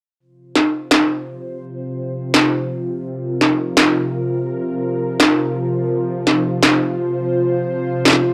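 A dry, gritty hardware recording with light reverb carries this heavy, cinematic half-time drum and bass fragment, where an up-front, clanging electronic snare, re-recorded in a small room, enters at 0.6 seconds with a swung 16th feel, and a tense, detuned sawtooth drone of bowed-like sustained chords, bright and string-like with a noise layer, vibrato, built-in reverb, vintage 12-bit sampler character and a filter sweep, swells in slowly from 1.0 seconds.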